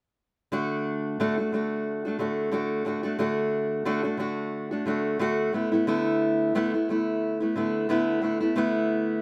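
A fingerpicked steel-string acoustic guitar enters at 0.5 s, sitting up front with a warm, concert-like tone and audible finger squeaks as it accompanies in an easy-going, heartfelt pop vein. The guitar has a lightly swung feel and rests on a D chord before shifting to Asus2/D at 5.5 s, all within a moderate studio reverb. This brief excerpt, cut from a longer piece, ends at 9.2 s.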